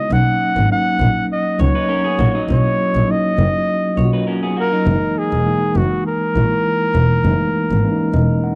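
Lush and warm, this short soul passage is cut from a longer piece and moves with a gentle swing in the sixteenth notes. A breathy flugelhorn carries the melody up front in a smooth pop style, scooping into its notes over a mellow, clean tine electric piano heard through its built-in speakers. Beneath them, a single bowed double bass sits close and prominent, its rich, nasal tone floating on a soft, airy attack. From 1.6 to 5.6 seconds a picked electric guitar adds a riff through a small old amp, slightly broken up and bathed in spring reverb, set lower in the mix than the other parts. The harmony moves from Bmaj9 to F#13, and the electric piano slips in a brief fill at 7.8 seconds, all captured in a dry, intimate 1970s-style studio sound with a touch of studio reverb.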